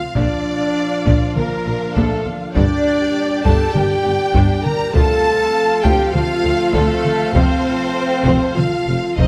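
Dramatic and relentless, this excerpt from an epic orchestral film score in G minor moves at 100 BPM in a straight 4/4, with a distant, vibrato-rich violin section carrying the melody while a pure, straight-toned concert flute and a second, smooth-topped violin section trace a second line in the background. Viola, with its soft attack and portamento, supplies accompaniment, while a lush string section, dark vintage-tinged French horns and tight trombones hold sustained chords moving from Bb through Gm and Dm7 to F. Expressive cellos and clear, focused double basses anchor the bass, and a compressed, saturated taiko ensemble struck with hard sticks drives beneath it all from 0.2 seconds, the whole orchestra set in a moderate scoring-stage reverb.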